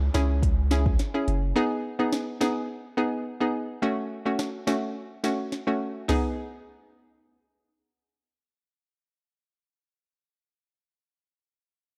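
A straight 4/4 dancehall groove at 106 BPM drives this sultry, bouncy excerpt, set in G# phrygian and cut from a longer piece. The up-front electronic Afro-pop drum kit pairs a deep kick and sharp snare with metallic hi-hats, rim clicks and toms, running until 6.2 seconds. A punchy sine sub bass with a pitch-drop attack opens the track but drops out at 1.5 seconds, while a very faint electronic downlifter sweeps through the opening moments. A hollow, detuned square-wave pluck carries the chords from C#m through G#m and F#m and back to G#m; it is bright and quickly decaying, with a filter sweep, chorus and sidechain pumping. That pluck plays alone after the drums stop and continues to 9.8 seconds. The production is dark overall, with a light reverb.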